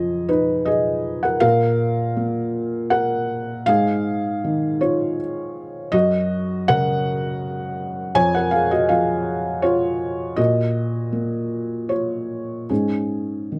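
Intimate and hopeful, this short neoclassical minimalist piano excerpt, cut from a longer piece, sets a solo felt-muted upright piano up front in a rubato 3/4, its soft, dark, thick-felt tone captured by close, detailed microphones in light reverb as it moves through chords from Fm7b5 to C#add9/G# and A#m across the full 13.6 seconds.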